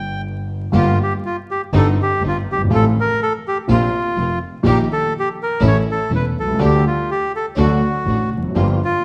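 Tense and passionate, this rubato tango excerpt in G minor at 123 BPM sets a reedy, up-front bandoneon melody over dark, mellow grand piano with deep bass and short sustain, a clear bowed double bass with focused vibrato, and earthy chamber strings adding smooth-topped bowed stabs from 0.7 seconds, all in a recital hall reverb with vinyl crackle as the harmony moves from Gm7 through Eb/Bb and A to a closing D.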